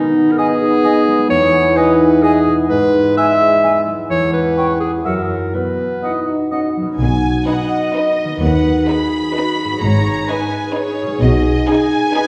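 Quirky and playful, this whimsical cinematic film cue moves at 128 BPM in a straight 3/4 in B major, heard as a short cut from a longer piece. A mellow, ringing concert harp sits up front with fingerpicked arpeggios through the whole passage, while in the opening phrase a bright clarinet carries a second line over sustained chords from a clear French horn section, joined at 0.4 s by an airy silver flute in the background and a distant, roomy cor anglais. At 7.0 s the winds and horns give way to strings: a rich violin section takes the melody with light vibrato and a soft, sul tasto touch, over a floating cello section in the background and a close double bass section. A clear second violin line and a viola section playing accompaniment join shortly after, giving the strings an intimate, pure glow. The harmony drifts from G#m/B through Emaj7 and a half-diminished turn to F#7 before settling on B, and a wet scoring-stage reverb places the ensemble further back in the room.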